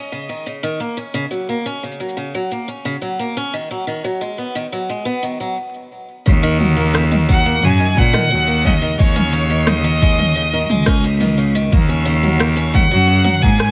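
A rich, smooth, even violin with vibrato and a vintage 12-bit sampler grit carries the melody, heard only briefly at the start before returning at 7.3 seconds, in this wistful, autumnal folktronica excerpt in Eb minor at 88 BPM. Underneath, a bright, boxy picked acoustic guitar plays swing-style arpeggios through a delay, while an electronic drum kit of crisp hats, rim clicks, shaker and toms adds overdrive and low-pass filtering. After a short break, a biting, intense bowed cello bass and a muffled, thumpy, pitched-down kick enter at 6.3 seconds, shifting the harmony toward Ebm7 beneath a small room and vinyl crackle.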